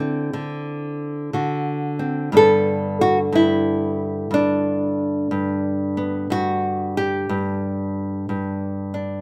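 A loping swing feel in four carries this playful, brief passage of solo jazz, where a lone fingerpicked nylon-string guitar, small and acoustic and placed up front in light reverb, moves from a D9 chord to G at 2.3 seconds and plays on until the cut at 9.2 seconds.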